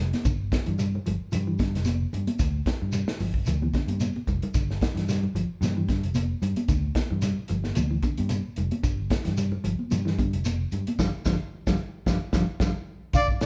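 An up-front, round fingered electric bass drives this funky afrobeat groove at 112 BPM, joined by a small-room soul drum kit with a tight kick, high-tuned damped congas sitting in the background and a grainy shekere. A mellow, clean electric guitar plays dark arpeggios through harmonic tremolo, with drum fills at 4.0 and 12.3 seconds and a band accent from 11.0 to 13.1 seconds. At 13.1 seconds a bright, reedy shakuhachi enters with an airy second line, and a breathy, intimate trumpet briefly touches a single melody note.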